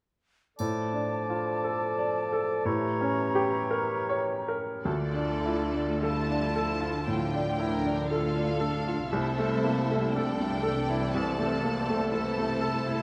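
A bright, up-front baby grand piano carries the melody through this tragic, brooding romantic classical excerpt in 4/4 with a rubato feel, first joined by a clear oboe, an airy flute, a dark clarinet, a distant bassoon and a close, dry triangle, before bowed string sections enter from 4.8 seconds: violins sing a smooth line above a second violin part, while an expressive viola, a cello section and a woody, lush double bass sit underneath, the whole ensemble heard in a moderate concert hall reverb.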